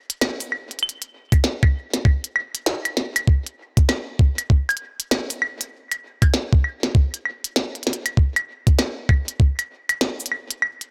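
A glitchy electronic drum kit opens this eerie, intricate IDM excerpt at 98 BPM in 4/4, its tiny snare, clicky hats, cabasa and claves set up front with a 16th-note swing and a small-room character. At 1.3 s a gritty, thumpy, pitched-up sampler kick joins, compressed and tape-warm, sitting up front until it stops at 9.5 s. The overall sound is dry.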